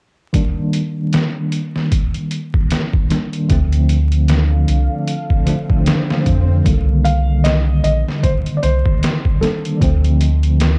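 A slow, swung 76 BPM trip hop groove in 4/4 opens the piece: a compressed, pitched-down sampler-style kit with a thumpy kick, medium-tuned snare and hi-hat, overdriven and placed up front. A tine electric piano carries the chords from the start, clean through a combo amp, with tremolo, tape echo and filter sweeps moving across Ebmaj7 and Dm in C dorian. A deep, round dub sub bass arrives at 3.5 seconds and sits prominently beneath everything. A dark, detuned ambient pad breathes in at 4.2 seconds with chorus, reverb and gritty 12-bit sampler texture, while a faint electronic swell sounds in the background. At 7.0 seconds a felt-muted upright piano takes the melody, soft and intimate with tape echo, over Cm7 and Dm. The mood is brooding and smoky, with a dry, dusky production touched by vinyl crackle, in what is clearly a cut from a longer piece.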